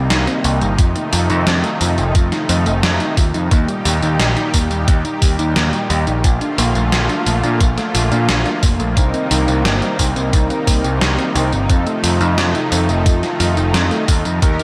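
A straight 4/4 synthwave groove at 88 BPM carries this uplifting, dreamy excerpt, where a thumpy, up-front electronic kick from 0.8 s joins a gated 80s drum machine of hi-hat, snare and tambourine with gated reverb, under a growling, overdriven picked electric bass and a lush, detuned sawtooth pad, both pumping with sidechain, while a round, tine-like FM pluck plays chorused arpeggios with tape echo in the background and mellow, brassy synth stabs with a filter sweep arrive at 9.0 s over a Cm7, F7, Eb, Bbmaj7 progression in light reverb.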